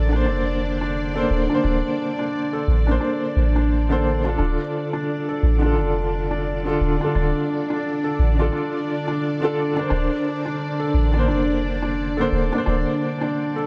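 The recording is dry, with little reverb, and this fragment of a longer trip hop piece has a smoky, cinematic mood at 87 BPM in 4/4, its sixteenths swung. An upright piano with a woody, boxy tone and audible action noise plays the accompaniment up front, colored by tremolo, 12-bit sampler grit and tape echo. Alongside it, a string machine voicing cellos holds sustained sawtooth chords, vintage and full-bodied, with a soft attack and an ensemble chorus. A felt-muted upright piano adds mellow, hushed arpeggios in a narrow middle range, roughened by the same sampler grit and set in delay. A round, sine-like 808-style bass sits deep and prominent, decaying after each fast attack, and drops out at 12.9 s while the other parts continue to 13.7 s. The harmony rests on a single Bbadd9/D chord throughout.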